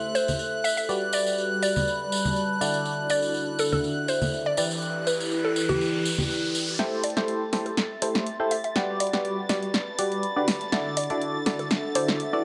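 Piano house at 122 BPM in A dorian, bittersweet and soulful, with a light swing on the sixteenths and chords cycling through Am7, Gmaj7, Dadd9 and Em7. A biting, barking FM electric piano carries the riff up front, its vintage tone colored by a phaser and a low-pass filter, while a hollow, bouncy square-wave pluck sings the melody through chorus and dub echo. Beneath them a warbly, lo-fi tape-like pad adds a nostalgic, dark haze with chorus and its own reverb, and a symphonic violin section holds soft, floating sul tasto chords high above. Bright, saturated tambourine and congas drive the opening until 6.8 s, with an electronic riser building from 4.2 s. At 6.8 s a punchy analog drum machine takes over with hi-hat and snare, leading a build-up with a drum fill as filter sweeps move across the electric piano and violins, all set in a moderate plate reverb that keeps the top end soft.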